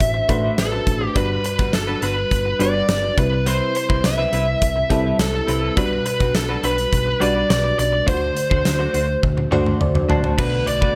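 A straight 4/4 pulse at 104 BPM drives this uplifting, glossy 1980s-style pop excerpt in G major, where a big rock drum kit with a fat snare, punchy kick and bright cymbals sits up front, drenched in gated reverb, over a round, dark hollow-body picked bass thickened by tube saturation. A glassy, bell-like FM electric piano with chorus supplies the accompaniment while a clean, direct-recorded electric guitar spins a riff through lush chorus and delay, and an overdriven lead guitar from a small cranked amp carries the melody through chords moving from D7/A to Gmaj7, Cmaj7 and D7. A drum fill and an electric piano fill arrive at 9.2 and 9.5 seconds, and a very quiet, shimmering pulse-width pad slips in at 10.4 seconds on a Bm7 chord.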